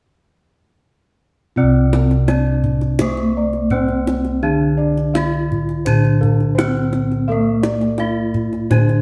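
Javanese gamelan with a shimmering, ceremonial mood, cut from a longer piece: from 1.6 seconds a bright bronze metallophone, struck with a horn mallet, carries the melody with the shimmering beats of paired tuning. A darker, smooth metallophone played with padded disc mallets accompanies it, while two sets of bossed gongs, one mellow and soft and one bright, round and full, add arpeggios and a deep bass line. The kendang joins at 1.9 seconds with hard hands, tight and close, and the whole band, playing live together, sits in a reverberant stone room.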